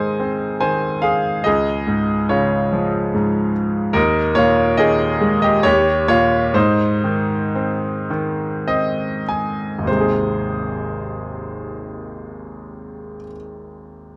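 In a free, rubato 3/4 that drifts between 49 and 74 BPM and slows from 4.0 to 9.9 seconds, this peaceful, calm classical fragment in Ab major features a solo baby grand piano, brilliant and intimate with audible action noise and long sustain, sitting up front in light reverb and a dark production, spanning Ab1 to Ab5 and adding a fill from 8.1 to 9.9 seconds as the harmony moves through Ab, Db, Ebsus4 and Eb back to Ab.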